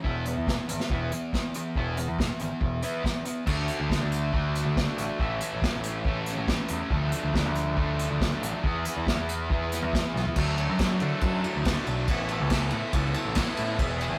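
A straight 4/4 pulse at 140 BPM drives this carefree, wistful indie rock cut from a longer piece, with all three parts playing together from the opening second to about 14 seconds. A bright, double-tracked fuzz guitar sits up front with a distorted, compressed riff between E3 and A4, moving from an opening E5 through D, A, Dm and E before settling on D and Asus2. Beneath it, a growling picked electric bass, overdriven and amped, spans E1 to D3. The acoustic drum kit, played with bundle sticks in an airy small room, pairs a punchy kick and medium-tuned snare with hi-hat, ride, crash and toms, and a fill at 10.1 seconds leads into the closing stretch at 10.4 seconds. Light reverb and warm saturation give the whole thing the rough feel of a rehearsal-room take.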